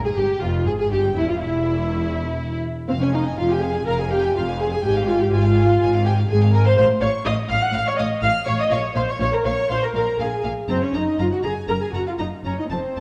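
Dark, woody violas sit up front in this urgent, restless passage for string orchestra, a quick classical-period movement with a rubato feel, cut from a longer piece. A violin section carries the melody with an intense tone and light vibrato, while a second violin section adds a lush, even line in a higher register. Cellos give a clear, focused bass, with a smooth, distant double bass section beneath them, both bowed with vibrato. The strings sit in a reverberant scoring-stage space, and the whole recording has a worn, warbling old-cassette quality with drifting pitch. The harmony moves through minor and major chords before arriving on a Gb chord at 10.7 seconds.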